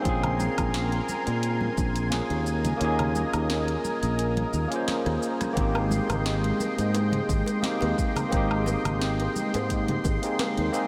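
This sunset chillout excerpt has a warm, sunny mood, set in a gently swung 4/4 and soaked in a huge, dreamy reverb. A gritty, barky tine electric piano played through a combo amp carries the accompaniment through a diffuse ambient delay, while a thick, warbling sawtooth pad with a slow attack and long release holds sustained chords up front. Underneath, a growly, up-front fretless electric bass with lush chorus anchors the harmony, which moves from Bbm9 to Abmaj7 at 5.6 seconds. The rhythm comes from a deep, layered electronic kick, an overdriven R&B drum kit with a sharp snare, warm hats, rim click, shaker and woodblock, and bright congas and bongos sitting in the background. The kick drops out at 2.8 seconds, a drum fill starts at 4.9 seconds, and a band accent marks the arrival of the second section.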